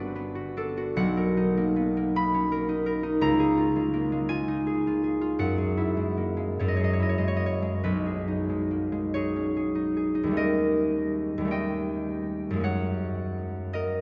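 This classical solo harp piece is peaceful and graceful, moving in a slow, rubato 6/8 at around 47-58 BPM in dotted quarters. A bright, ringing concert harp sits up front, fingerpicked across a span from G1 to B5 through rich chords such as Bmaj9, F#9 and B69, and it turns to a new section at 10.3 s with a D#7#11. The harp is bathed in a long, wet cathedral reverb, giving this short cut from a longer work a spacious, glowing church or concert-hall sound.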